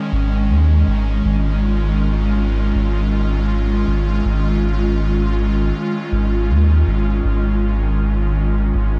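A swung 4/4 pulse at 80 BPM, with 59% swing on the sixteenths, carries this spacious, hazy ambient dub excerpt, where a deep, round sub bass from 0.1 seconds sits up front beneath an airy, breathy pad whose detuned, warbling, vintage chorus sustains a C#add9/G# chord, all bathed in light digital reverb and tuned to A4 = 439 Hz.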